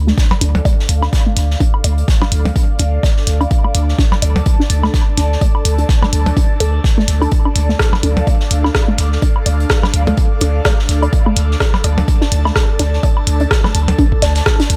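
A digital ambience frames this clinical, quirky stretch of minimal techno, cut from a longer piece and sitting in D minor at 126 BPM in 4/4 with a swung sixteenth feel. A deep, punchy sine sub bass with a pitch-drop attack holds D2 up front beside an electronic kick drum re-recorded in a small room, and both anchor the groove across nearly the whole excerpt. Over them, a squelchy, resonant pulse-and-sawtooth pluck plays the riff between A3 and D5, bright with phaser, delay and a moving notch, while a filter sweep runs across this synth arpeggio throughout. An airy, breathy pad with a noise layer, chorus and phaser drifts softly between D4 and A5 beneath, pumping with the sidechain like the bass, the pluck and the hats of the soft-mallet kit. Percussion comes from a minimal click drum kit of clicky hats and rim clicks, a distant, roomy acoustic kit with high-passed hats and a medium-tuned snare, and layered electronic blips and woodblock trailing tape echo. 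The whole passage rests on a single D minor chord.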